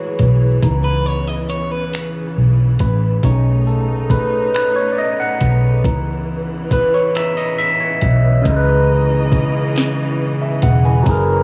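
An overdriven tine electric piano, barky and gritty through a combo amp with a phaser, takes the lead in this late-night, sultry slow six-eight R&B excerpt, carrying a solo through the first 8.4 seconds over round, foam-muted fingered bass, a produced drum kit with soft kick, sharp snare and finger snaps, and lush, woody sul tasto strings, while a slightly broken-up electric guitar with spring reverb adds a brief second line from 0.8 to 3.0 seconds, all set in a small room ambience.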